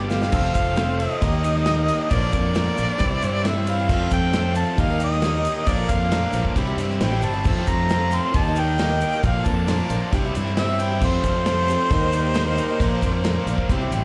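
Hopeful and open-road, this 135 BPM folk rock and heartland rock excerpt in 4/4 bursts in from a drum fill onto a cycling F, Eb, Bb, C progression, with an up-front harmonica, its vibrato and scooped notes set in plate reverb and slapback echo, carrying the melody over a round, dark fingered bass, a natural country kit with punchy kick and dark cymbals, a boxy picked swing-style acoustic guitar, a double-tracked overdriven electric guitar riff, a faint reedy tonewheel organ with key click and slow rotary speaker, and a grainy, very quiet tube shaker, while a slightly broken-up slide guitar played with fingerpicks flickers at the start and returns at 11.7 seconds, the whole heard as a live gig through a venue PA with club reverb.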